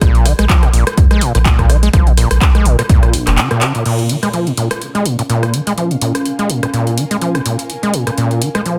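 A trippy, hypnotic acid house drop opens on a squelchy, gritty overdriven acid bass riff, up front with tape grit, analog delay and sidechain pumping, over a deep, thick saturated sub bass, a punchy up-front electronic kick and a booming analog drum machine with metallic hats, handclaps, rim clicks and crash cymbal, all swung on the 16ths. The kick and sub bass fall away into a short break, marked by a drum fill and band accent at 3.6 s, while the acid riff and drum machine carry on. From 4.6 s an ethereal pad with chorus, phaser and built-in reverb drifts in the background over a Bbm7 chord, pumping with the sidechain in a dense, heavily limited modern master.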